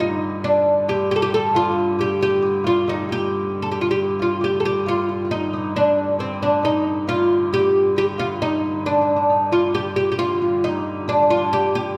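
A mysterious, ancient-sounding medieval piece in a straight triple metre, cut from a longer work, opens with two plectrum-plucked oud lines sounding together from the start: a woody, up-front melody and a deeper second line set in the background. Beneath them a clear hurdy-gurdy holds a low drone with a biting, nasal, wheel-bowed tone and an airy edge. The whole ensemble is heard from further back in a wet recital hall, its 1.7-second reverb lending the ensemble a distant, resonant glow as the opening material returns at 4.4 seconds.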